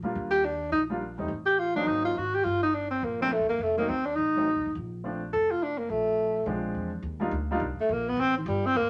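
A swinging 4/4 at 209 BPM drives this short, sophisticated small-group jazz fragment in Bb major, where a mellow, up-front tenor saxophone leads with subtone, vibrato and scooped notes over clear, open baby grand piano comping until 7.6 seconds and a woody, thumpy pizzicato upright bass on gut strings, all set in a moderate studio reverb as the changes move from Ebmaj7 through F7b9 toward Am7b5.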